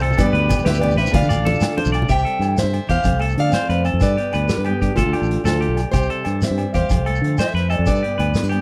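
Sunny and warm, this brief highlife guitar band excerpt rolls along at 125 BPM in a straight 12/8 in C major, with a parlour-style picked steel-string acoustic carrying the melody over background nylon-string fingerpicking, twangy clean electric guitar arpeggios touched with subtle chorus and slapback echo, a round, dark fingered bass up front, a punchy vintage drum kit in a pumping small room, grainy shekere and ringing agogo bells throughout, and a buzzy combo organ and soft-handed congas that drop out at 2.1 seconds as the G, Dm, C and F changes cycle in a dry, close sound.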